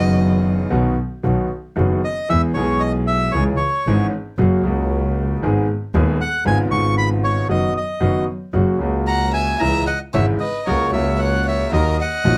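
A short excerpt of a playful, nostalgic tango in B major at 114 BPM with a rubato feel opens at 0.0 seconds with an intimate, sul tasto violin over a boxy, long-sustaining grand piano and a dark, woody bowed double bass, before a reedy, airy bandoneon takes the up-front melody from 2.0 seconds and the violin returns as a soft second line at 9.1 seconds, all set in light reverb with close, detailed sound.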